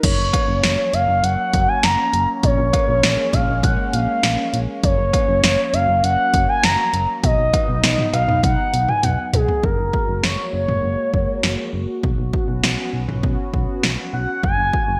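A steady, straight 4/4 pulse at 100 BPM drives this upbeat yet wistful synth-pop passage in F# major, cut from a longer piece, with a punchy analog drum machine up front, its kick and snare bathed in gated reverb among hi-hat, cowbell, toms and crash, and a drum fill from 8.4 to 9.6 seconds leading into a new section built on F#add9 and Bsus2 chords. Beneath it, a round, dark FM bass with a fast, decaying attack holds the low end while a shimmering, chorused pulse-width pad sustains mellow chords through F#, A#m7 and B. Above them, an expressive, warbling portamento lead carries the melody with vibrato and chorus, all framed by a moderate plate reverb and bright 1980s-style digital production.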